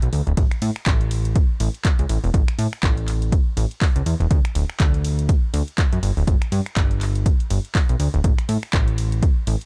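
A dark, dry production frames this joyful, uplifting piano house excerpt at 122 BPM with a 16th-note swing, where a plucky, funky sawtooth-and-square analog bass with a fast filter pluck sits up front and pumps against the sidechain, a punchy electronic kick drum enters at 0.4 seconds, and a tape-warm analog drum machine supplies finger snaps, handclaps, hi-hat and ride cymbal.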